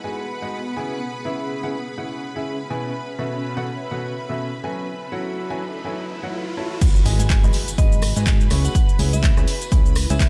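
Energetic and soulful, this piano house cut runs at 124 BPM in 4/4 with a swung sixteenth-note feel, moving through G#m7, C#m7, B9sus4 and F#m7. From the start, a clear, woody upright piano plays a riff with analog delay, over sustained chords from a rich, bowed symphonic string section with light vibrato and a biting, intense edge. Behind them, a cloudy granular pad drifts and evolves with chorus and built-in reverb, and the piano, strings and pad all pump against the sidechain. A riser in the background climbs from 5.1 seconds into an impact as the drop lands at 6.8 seconds, bringing in a dry, punchy electronic kick up front, a tape-warm house kit of crash, handclaps, hi-hat, rim click and shaker, a very quiet unplugged kit of hi-hat and snare played with bundle sticks, and bright tambourine and congas. A funky, plucky analog bass with a filter pluck and fast attack arrives at 7.1 seconds, and a soft, warbling vintage FM bell melody with phaser and delay floats in the background, all set in a small room with light reverb.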